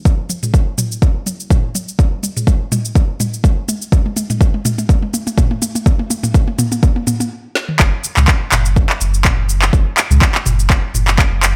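A swung afro house groove at 124 BPM in 4/4 opens this short excerpt from a longer piece, its sixteenths pushed with a gentle lilt and a spiritual, earthy mood. An up-front electronic kick drum, deep, layered and overdriven, anchors the pulse with the character of a large room. Around it, an afro-pop drum kit of cabasa, handclaps, a woody snare and toms fills out the percussion in a small room reverb, while a round sine sub bass with a fast attack and long sustain pumps beneath, ranging from E1 to C#2. The opening stretch is a build-up threaded with drum fills, halting for a brief stop at 7.3 seconds before the drop lands at 7.8 seconds and carries through to the end. The sound sits in a digital ambience.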